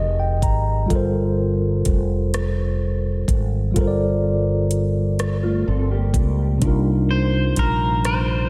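A slow six-eight R&B groove at 42 BPM in G minor sets a late-night, sultry mood in this short cut from a longer piece, with a dreamy mix soaked in a lush hall reverb. A clean tine electric piano, heard through its built-in speakers, opens with a brief fill and carries the chords from Fm11 to Gm11 and on to Cm11, while a dark, round fretless electric bass sits up front underneath it. The smooth drum kit enters at 0.4 seconds, with an electronic, produced sound, a knocking kick, metallic hi-hats and a rim click. At 5.4 seconds a dark, compressed electric guitar, played with the fingers, adds a second line coloured by ensemble chorus and delay. Near the close, at 7.1 seconds, a picked, twangy guitar at the edge of break-up takes the melody, its slightly gritty tone bathed in spring reverb.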